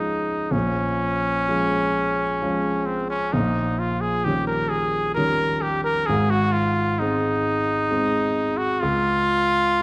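Tender and warm, this short excerpt from a longer romantic classical piece pairs trumpet and grand piano in an unhurried triple metre with a flexible, rubato feel. The trumpet carries the melody up front in a classical style, its tone warm in a middle register. The grand piano supports it throughout as accompaniment, also up front, with an intimate, natural sound in which the mechanical noise of its action can be heard. The harmony moves from Db through Bbm7 and Eb7/Bb to Ab before settling back on Db at 8.8 seconds. A wet recital hall reverb surrounds the duo, and vinyl crackle runs beneath the recording.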